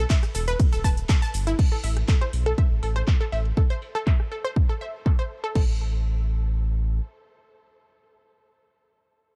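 A round, deep analog bass with sidechain pumping opens this expansive, emotional progressive house excerpt at 121 BPM in straight 4/4, tuned to A4 = 438 Hz, and is joined at 0.1 s by a punchy, up-front electronic kick, a tape-warmed house kit of metallic hats, ride, crash, handclaps, cabasa and rim click under low-pass filtering and pumping, and a lush, detuned unison pluck playing delayed arpeggios over an E minor chord in the opening drop, before a filter sweep on the drums runs from 1.6 to 5.6 s in a dark, dry mix.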